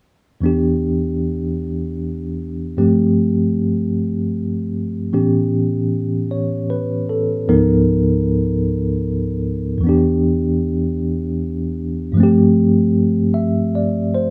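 A clean tine electric piano, up front and colored by a medium tremolo through a combo amp, carries this romantic, tender jazz excerpt from 0.4 to 14.3 seconds, ranging from Db2 to E5 as it voices Em7, G7sus4, A9 and Db13 before circling back to Em7 and G7sus4. The slow 51 BPM tempo in 4/4 has a gentle swing on the eighth notes, and a modest small-room ambience with studio reverb gives the intimate sound a soft halo.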